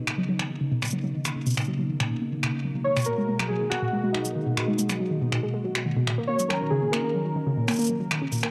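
A phased analog pad opens at 0.0 seconds with swirling, airy sustained chords, a filter sweep moving through its detuned sawtooth tone. Almost at once, a dusty, warbling pluck enters with lo-fi arpeggios roughened by 12-bit sampler grit, delay and its own filter sweep, joined by up-front electronic finger snaps and cabasa that carry a tape-softened, small-room character. This eerie, cerebral IDM fragment moves at 140 BPM in a straight 4/4, with harmony shifting from Bmaj9 to G#m9 and then D#m7. At 2.8 seconds, nostalgic, mellow lo-fi synth keys take up the melody in a higher register, sitting forward in the mix with chorus and tape echo. A lush hall reverb and a dark, warm production wrap the short excerpt in a hazy glow.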